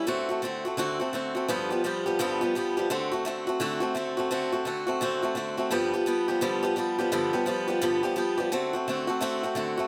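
A swung, fast 171 BPM rock pulse in 4/4 drives this rowdy, upbeat cut from a longer piece, played by a lone picked swing-style acoustic guitar in D mixolydian. The guitar sits up front with a bright, boxy tone and a slapback echo, ranging from G2 to G4 as it moves between D7 and G7. A moderate studio reverb gives the solo performance a touch of room around it through its roughly 10 seconds.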